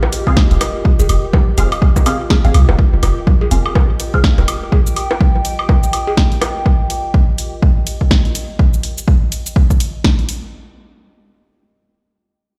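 A swarming, detuned drone, a warbly, nostalgic tape-like pad and layered bongos, woodblock, cowbell and congas open this sparse, hypnotic minimal techno drop at 124 BPM with swung 16ths. A punchy analog drum machine's hi-hat, shaker and snare enter at 0.1 seconds. An overdriven, up-front electronic kick and a muted, dark filtered dub chord stab with phaser and delay follow at 0.3 seconds, and a deep, sine-toned sub bass with a pitch-drop attack arrives at 0.5 seconds. The drone, pad and bass pump throughout, and everything rings through a stone room reverb as if played on a big sound system in a bare room.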